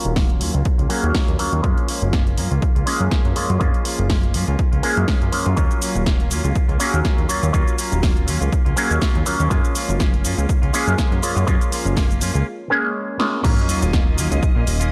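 A swung 16th-note groove at 122 BPM in 4/4 drives this nostalgic, groovy slice of filtered disco house in Eb minor, cut from a longer piece. A punchy electronic kick with a tape-warm thump anchors the beat, while an analog drum machine adds a punchy snare, hi-hat, shaker and crash, its hats, percussion and cymbals pumping against the kick. A funky, plucky analog bass with a fast attack and tube saturation outlines the Ebm9 and Gbmaj7 chords. It is joined by an overdriven auto-wah clav with a nasal, hollow quack and a phaser, plus a clean, fingered semi-hollow guitar riff roughened by vintage 12-bit sampler grit. These melodic parts pump and sit under a low-pass filter, and a filter sweep runs through the opening 13.4 seconds. A drum fill and band accent at 13.2 seconds lead into a drop at 13.4 seconds, where a lush, chorused string machine swells in softly behind the band and a very quiet sub drop lands beneath. 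The mix is dry, with very little reverb.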